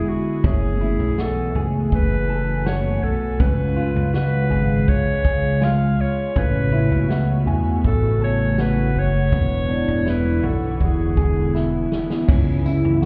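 A straight 4/4 pulse carries this haunting, ethereal dream pop passage, cut from a longer piece and heard as if muffled through a wall in a club-like reverb. A vintage acoustic drum kit joins at 0.4 s with a tight kick, medium-tuned snare, tambourine, toms and dark crash cymbals, its top rolled off, and a drum fill runs from 11.5 to 12.3 s. Underneath, a fat, detuned sawtooth analog bass sits up front with a filter sweep, while a hollow, flute-like soft pad holds sustained chords through a chorus effect. An electric guitar at the edge of break-up picks compressed arpeggios with subtle chorus and tape echo. Over the top, a bright, soft-attacked clarinet sings a classical-style solo melody through tape echo until 11.9 s, as the harmony moves from F#m11 through C#7, A69 and E7 before settling on C#m7.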